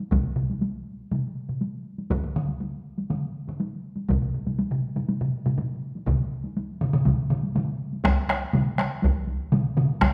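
Ceremonial and driving, this excerpt of Japanese traditional taiko drumming in straight 4/4 sets three taiko ensemble parts, struck with heavy and hard sticks and sounding close, dry and up front, before solo taiko drums with hard sticks and a small-room sound join at 2.1 seconds, all inside a recital hall's wet reverb as the piece shifts into a new section at 8.1 seconds.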